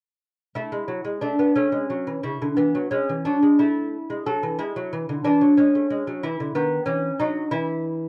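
Classical baroque-style dance in A major and flowing 6/8 at 61 BPM with a rubato feel, this short cut from a longer piece features a solo fingerpicked lute with delicate, doubled gut strings and some octave-doubled courses, playing up front from 0.6 to 8.1 seconds over chords that sway between A and E before moving to C#m11/D#, all captured in a dry, close 1970s-style studio sound with a touch of small-room reverb and tuned slightly low at A4 = 436 Hz.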